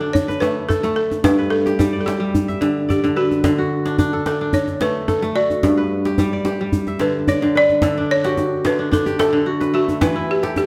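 Hypnotic and joyful, this short excerpt of West African string and xylophone music moves at 109 BPM in a straight 4/4 in D major, with a bright, ringing, fingerpicked kora spinning crisp arpeggios up front, a woody, buzzing balafon struck with rubber mallets carrying the melody, and a deep djembe played with soft hands and fitted with metal rattles, heard in a wet recital hall as the harmony circles between D and G before turning to E minor at 10.0 seconds.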